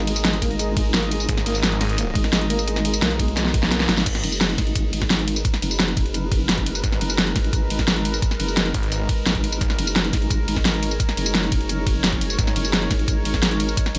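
Dark technical drum and bass at 173 BPM in G# minor, tense and aggressive, this excerpt rides a deep, moody pad of detuned sawtooth chords with chorus, reverb and sidechain pumping beneath a nasal, resonant wobble bass that sustains throughout. A soft felt-muted upright piano plays background arpeggios through a digital delay until 4.1 seconds, when the drum fill that begins at 3.4 seconds ends. Up front, a dubstep kit with a huge snare and metallic hats pairs with a knocking electronic kick, while a snarling, tube-saturated saw bass growls in bursts from 1.3 and 6.8 seconds.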